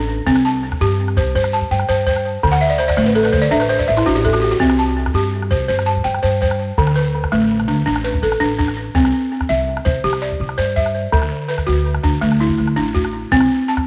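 A buzzing, up-front balafon played with rubber mallets spins dry, woody arpeggios through tape echo and adds a fill from 2.5 to 4.6 seconds, over a dark, thumpy pizzicato upright bass on gut strings and a small, close calabash, in this hypnotic West African string and xylophone fragment in 12/8, where the chords alternate between C and D in a small room with echo-chamber reverb before the harmony falls away at 13.3 seconds.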